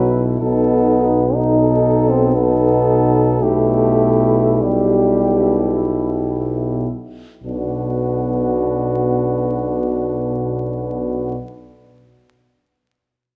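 A solemn, yearning brass band hymn in 3/4 opens with the whole ensemble sounding together, cut from a longer piece. A mellow flugelhorn carries the melody, while a French horn section sits distant and in the background with light vibrato and a warm glow. Up front, a clear euphonium and a soft-attacked tuba with light vibrato and a smooth top anchor the accompaniment and bass, and a very quiet, roomy trombone holds a single low note far behind them. The rubato phrasing slows through the opening 7.4 seconds over a B7 to Em/B progression, then settles onto Bm as a new section begins. A recital hall reverb and a layer of vinyl crackle frame the ensemble until the instruments stop at 11.4 seconds.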